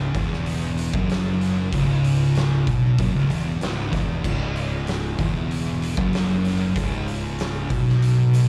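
A straight 95 BPM pulse in 4/4 drives this heavy, sludgy stoner and doom metal fragment, which holds a single C# minor chord for about 8.5 seconds. A thick, double-tracked fuzz guitar picks the low riff up front, while an overdriven fingered electric bass adds a bright, growly, punchy snarl beneath it. An oversized low-tuned acoustic kit enters at 0.1 seconds with a boomy kick, fat snare, hi-hat and dark crash cymbal, its gritty saturation and pumping room sound carried through a live club PA and reverb.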